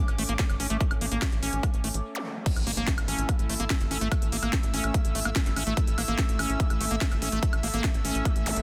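Psychedelic trance at 145 BPM in A major, this short, intense and driving passage is cut from a longer piece. A tight, dark sequencer bass with a tube-saturated sawtooth bite drives the low end beneath a squelchy, resonant liquid acid bass riff carrying chorus and delay and pumping against the sidechain. Behind them, an evolving wavetable pad morphs and warbles through sustained chords in the background, while an airy, breathy pad with a soft noise layer spreads a vintage texture up to E6. A techno kit with a cracking snare, smooth hats, crash and woodblock joins at 0.1 seconds, and a punchy, layered electronic kick sits up front from 0.4 seconds. An electronic zap and impact sound in the background from 2.1 seconds, carrying a brief break at 2.0 seconds into the drop at 2.5 seconds, all within a dense, heavily limited modern master with light reverb.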